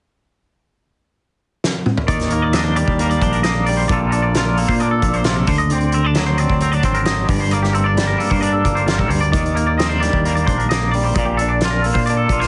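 A wistful, intricate math rock and midwest emo excerpt opens with a drum fill at 1.6 seconds from a loose, roomy indie kit with a fat snare and punchy kick, then at 2.1 seconds a growling, overdriven fingered bass and two clean, twangy electric guitars enter together, one scooped and mellow with harmonic tremolo as accompaniment and the other bright and up front, spinning arpeggios through harmonic tremolo and slapback echo over chords such as Ebmaj7, Bbmaj9, Daug7 and Gmadd9, all set in a dry, heavily compressed, radio-like sound with a dulled top end.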